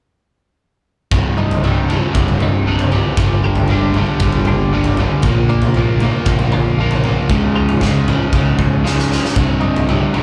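Dark and angsty, this quiet-loud alternative rock excerpt drives forward at 116 BPM in a straight 4/4, captured as a band playing live together in one large room with a moderate studio reverb. A punchy, up-front arena drum kit of kick, snare and toms anchors the sound with a natural, big-room character and a medium-tuned snare, throwing in a fill between 8.8 and 9.4 seconds. Up front beside it, a bright, scooped, double-tracked overdriven electric guitar plays a picked riff. Underneath, an overdriven picked bass, direct and amped, sits in the background from 1.1 seconds. A clean, compressed twelve-string electric guitar enters at 1.4 seconds with phaser-tinged arpeggios in the background. The chords move from C minor through G minor, B-flat and D-flat before returning to C minor.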